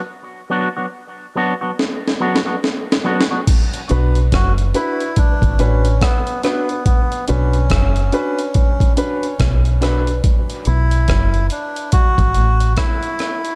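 Dark, warm production with light reverb and a digital ambience frames this deep, meditative dub reggae excerpt, cut from a longer piece and sitting at 71 BPM in 4/4 with a swung sixteenth feel in B minor. It opens on a bright, twangy electric guitar run through an envelope filter, clean and picked, shaded by a low-pass filter and dub echo, before a drum fill from 1.8 seconds brings in a gritty, compressed breakbeat sampler-style kit, pitched up and re-recorded in a large room, with a thumpy kick, a high-tuned snare, rim clicks, hi-hat and crash cymbal. At 3.9 seconds the round, foam-muted fingered electric bass arrives low and up front, alongside woody upright piano stabs that carry audible action noise, an intimate vintage character and their own dub echo. A reedy, breathy melodica takes the melody from 4.3 seconds, its nasal, airy tone softened by a low-pass filter and trailed by dub echo. 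The harmony rests on B minor before shifting to a B power chord at 10.2 seconds, with the drums and melodica carrying through to the close.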